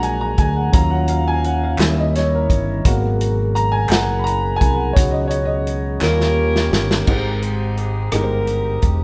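Reverent and hopeful, this slow gospel excerpt in 6/8 opens with a clear, worn baby grand piano taking a solo over a percussive, flute-like tonewheel organ turning through a slow rotary speaker, a fingered electric bass and a warm soul drum kit with dark cymbals and a tight kick, all sharing a moderate studio room as a band playing live. Very quiet, crisp group handclaps sit in from 1.8 to 6.3 seconds, and at 6.0 seconds a drum fill arrives together with a bright, tight saxophone section carrying the melody. The organ stops at 7.1 seconds as the harmony settles onto Abmaj7.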